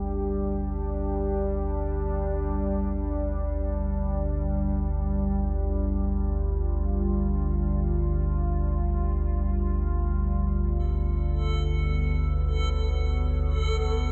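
A deep, ominous rumbling drone with subtle chorus anchors this cavernous, unsettling dark ambient passage in free time, cut from a longer piece. A moody sawtooth pad with chorus sustains chords that shift from G5 to Bm7 at 10.4 seconds while gradually fading out, and a reversed, dreamy, granular texture swells in brightly at 11.4 seconds, all set in a vast, echoing cathedral reverb with a cassette-tape grain.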